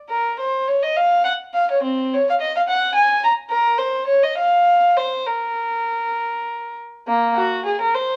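A 6/8 pulse moves with rubato at roughly 66-73 BPM, counted in dotted quarters, giving this grave, introspective fragment of a baroque-style suite movement a freely breathing sway. A single bowed violin carries everything, entering at 0.1 s and ranging from Bb3 to Bb5 in Bb minor, its period-style gut-string tone dark, nasal and reedy. The instrument sits up front yet keeps a faintly distant quality, set in a moderate large-studio reverb with a 0.9 s tail. The recording has the worn character of old cassette tape, its warbly pitch drift lending the sound a fragile, aged feel. The opening material runs until about 7.1 s, when the piece shifts into a new passage that is cut off at 8.2 s.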